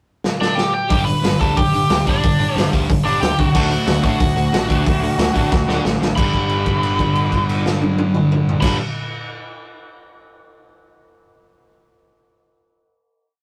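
Upbeat and energetic, this short, complete punk rock piece tears along at 182 BPM in a straight 4/4 in G major, captured as a rough rehearsal-room recording with light reverb and tube saturation. A raw garage drum kit sits up front with a punchy kick, medium-tuned snare, dark cymbals and a gritty, rolled-off top, playing a fast punk groove and throwing in fills during the pickup bar and again just before the final chord at 6.2 seconds. A biting, bright lead guitar with overdrive carries a free melody partly doubled in octaves, while two background rhythm guitars, one overdriven and compressed, the other tight and distorted, chug palm-muted eighth notes beneath it. A growling picked electric bass, direct and amped with overdrive, drives eighth notes under the riffs as the harmony moves from G to D. A very quiet, lo-fi, double-tracked garage guitar joins with ringing chords at 3.5 seconds, and the band lands on a held G chord that rings out to the end.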